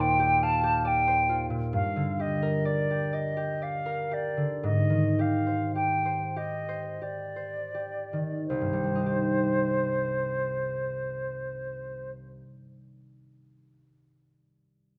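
A pure silver concert flute carries the melody with expressive vibrato and a crisp attack, singing between C5 and A5 over a concert harp whose fingerpicked, ringing accompaniment reaches down to C2. This hazy, mysterious impressionist duo in C minor moves in a rubato 3/4 between 39 and 70 BPM, slowing from 0.4 to 8.5 seconds as the harmony drifts from Cm11/Eb through Gm7 to Abmaj7 before settling on Cm as a new section begins. A wet recital hall reverb surrounds this excerpt from a longer piece, with the flute falling silent at 12.1 seconds.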